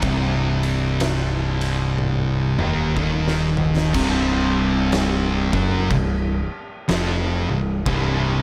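Stoner and doom metal, heavy and hypnotic, crawling at 61 BPM in C minor with a swung eighth-note feel, cut from a longer piece. Two thick fuzz guitars carry the riff, one up front and warm, the other darker, over a growling, overdriven picked electric bass, while an oversized low-tuned acoustic drum kit, with its fat snare, punchy kick, crash, ride and toms, sounds saturated and gritty in a bright stone room. A drum fill runs from 2.0 to 3.9 seconds, where the harmony moves from Cm to Csus4, and the drums stop at 8.1 seconds while the guitars and bass carry on to the end.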